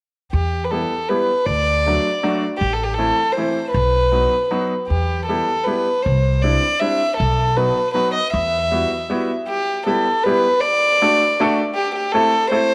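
A musette waltz with a nostalgic, bittersweet mood, cut from a longer piece, in which a single bowed violin carries the melody from 0.3 seconds with a soft, pure, floating tone played sul tasto and placed up front. A pizzicato upright bass with a woody, steel-string sound supports it until 8.8 seconds, while a bright, polished upright piano with short sustain accompanies from 0.7 seconds to the end. A moderate plate reverb adds a gentle sense of space as the opening phrase comes around again.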